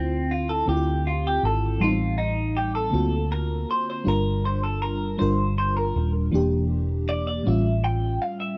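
In a straight 6/8 feel, this slow, sensual R&B excerpt features a clean, compressed electric guitar soloing up front through a phaser over a lush, dreamy FM electric piano with a soft pad layer shimmering with chorus and tremolo, while a dark, foam-muted fingered bass adds round, punchy low end, all captured in a dry, close 1970s-style studio sound as the chords move from Dm9 to A7b13.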